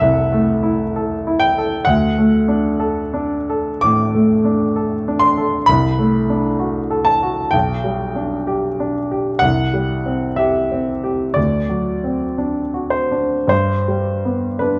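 A clear, natural-sounding baby grand piano sits up front with a short sustain, playing alone for the full 14.8 seconds across a span from B1 to D6 in this dreamy, tender romantic nocturne. The slow 4/4 pulse breathes with rubato as the harmony drifts from Am/C through D, D7/C, G/B, C and D7 before settling on G. A moderate recital hall reverb and a dark production frame the instrument, which is tuned slightly below standard pitch, and the passage is cut from a longer piece.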